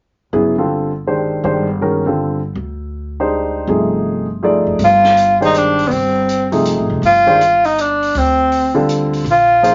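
Hypnotic and intense, this modal jazz excerpt swings in three at a brisk pace, opening on a G9sus4 voiced by a smooth, vintage-toned grand piano sitting up front, with a woody, thumpy upright bass plucked on gut strings underneath. At 4.8 seconds a breathy, mellow tenor saxophone takes the melody as an up-front solo, with light vibrato and scooped notes, while a natural-sounding drum kit enters quietly on hi-hat and a high-tuned snare. The moderate studio ambience gives a short, intimate room sound, and the top end is rounded off and soft.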